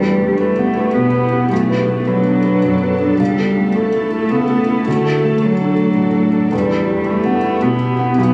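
Reflective and fragile, this short neoclassical piano and strings excerpt moves at 108 BPM in 3/4 with a rubato feel, settling in E dorian. A felt-muted upright piano carries the accompaniment from 0.0 to 8.3 seconds, its soft, mellow, intimate tone sitting up front with audible action noise. A muted cello plays a second line, dark and veiled under its mute, bowed by one player with light vibrato, a soft attack and portamento, sounding both up front and distant. Alongside them an ethereal, airy pad holds sustained chords with a slow attack and long release, its detuned sawtooth and triangle tones thickened by ensemble chorus and its own reverb. The harmony passes from Em through Bm7, A/C# and D before returning to Em at 6.5 seconds, all heard through a phone recording in the room with light club reverb.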